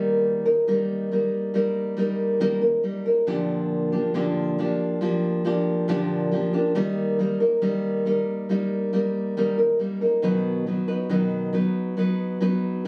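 A lone nylon-string guitar opens on an Eb chord, fingerpicked with a deep, classical tone and the bright sheen of fresh strings. This is a short excerpt of an emotional and hopeful pop piece at a slow 69 BPM in 4/4 with a straight feel, set in Eb major. The guitar carries the whole passage as a solo voice, ranging from Bb2 up to B4 and sitting up front in the sound. The harmony moves to Bb6 at 3.3 seconds, returns to Eb, then shifts to an unexpected B chord at 10.2 seconds. The guitar's tone is warm and acoustic, and a light club reverb surrounds it, as if the music were captured on a phone in the room. The clip is cut from a longer piece and lasts 12.9 seconds.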